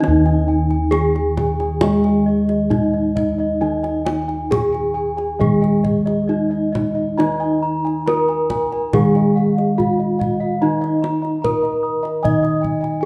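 Over an uneven 4/4 pulse at 68 BPM, this serene, ceremonial Javanese gamelan passage sets an up-front bronze metallophone melody with shimmering paired-tuning beats above a mellow, padded lower metallophone accompaniment, while a ringing high metallophone and airy bossed gongs spin arpeggios, round bossed gongs hold the bass, and a deep, close kendang is struck with hard hands, the ensemble heard within a wet recital-hall reverb.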